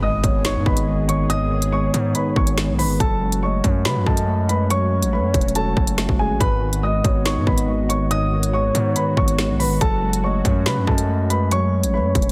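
Tense and dark, this half-time drill excerpt opens on a very quiet electronic impact as a baby grand piano carries the melody with audible action noise and a digital delay, shadowed in the background by a smooth, gliding portamento lead with vibrato. A clean tine electric piano and a detuned sawtooth analog pad hold the harmony over a distorted, saturated 808-style bass with a noise layer, while the drill drum kit enters at 0.2 seconds, up front, with a hard-clipped kick, woody snare and crisp hats. The sound is dry, dense and heavily limited, and the chords move between G#m and F#madd9.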